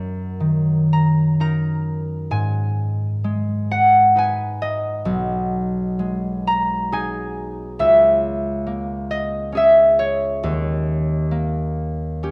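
Gentle and wistful, this brief classical passage for solo concert harp, cut from a longer piece, moves in an unhurried three-beat metre with uneven beats and a free, rubato feel. The fingerpicked harp sits up front, its bright, ringing tone spanning from Cb2 up to Bb5 across the full 12.3 seconds. The harmony drifts from Ebm/Gb through Abm and Abm/Cb, moving at 7.8 seconds to A#m7b5/C# before settling onto a dominant chord at 10.4 seconds. A wet recital hall reverb surrounds the instrument, and the overall production leans dark and warm.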